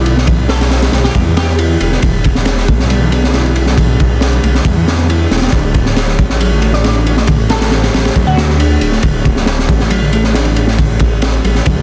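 Breakbeat at 137 BPM in E dorian, this funky, swaggering excerpt rides a crunchy, gritty breakbeat kit with tight kick, high-tuned snare and dark ride cymbal up front alongside a thick, menacing detuned saw bass, while a mellow tonewheel organ riff with slow rotary speaker and digital delay sits in the background over a very quiet, warbling tape-like pad holding Em7 then Dmaj7 at 5.5 seconds, and a glassy wavetable pluck with chorus, phaser and delay drifts in with short melodic phrases at 0.5 and 6.7 seconds, all under a dense, heavily limited master dusted with vinyl crackle.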